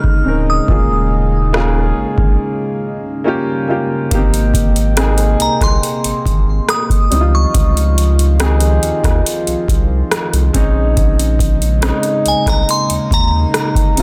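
A glassy, crystalline FM synth bell carries the melody through chorus, phaser and digital delay over a natural-sounding baby grand piano, a shimmering, dark pulse-width pad holding sustained chords and a booming analog drum machine of deep kick, metallic hats and rim click with a softly clipped snare, while a saturated, thick sub bass joins up front at 0.3 seconds in this romantic, dreamy contemporary R&B excerpt, which has a break from 2.4 to 4.1 seconds.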